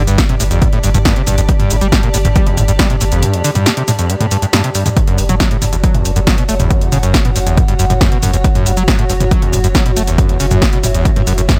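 An overdriven acid bass leads this driving peak-time techno cut, its squelchy, gritty sawtooth riff saturated and up front, running through analog chorus, digital delay and sidechain pumping in F# phrygian at 138 BPM in straight 4/4. Beneath it an overdriven electronic kick hits hard alongside a punchy analog drum machine of hi-hat, shaker, snare and toms, while a round sine sub bass holds the low end and a blurred, detuned granular cloud pad hovers higher in its own reverb. The dry, industrial, hypnotic mix moves from G5 to F#m at 5.0 seconds in this short excerpt cut from a longer piece.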